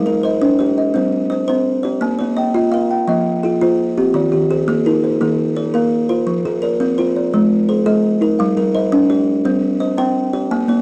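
A straight 12/8 interlocking cycle in the southern African mbira tradition ripples warmly through this short fragment of a longer piece, as a thumb-plucked buzzing kalimba, woody and mid-forward with a hollow-box ring, plays arpeggios alongside a mellow, soft, fingertip-plucked kalimba with a boxy small-room tone, both up front in a dry, close 1970s-style studio sound.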